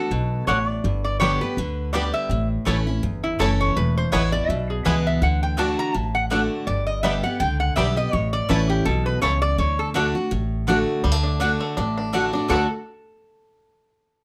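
A light reverb surrounds this short bluegrass cut, with the resonator guitar, acoustic guitar and upright bass sitting up front. The mood is joyful and driving at 165 BPM in 4/4 with a swung eighth-note feel, moving through D, G, A and E in D major. A lap resonator guitar, played with fingerpicks and a slide, carries the melody with a metallic, nasal tone from the start, dropping out at 9.9 seconds before a brief return near the end. Beneath it a full-bodied, picked dreadnought acoustic guitar holds down the accompaniment, while a woody, thumpy pizzicato upright bass anchors the low end. From 0.5 seconds a twangy, percussive bluegrass banjo adds a second melodic line a little lower in the mix, and a bright mandolin with doubled strings punctuates the groove with stabs.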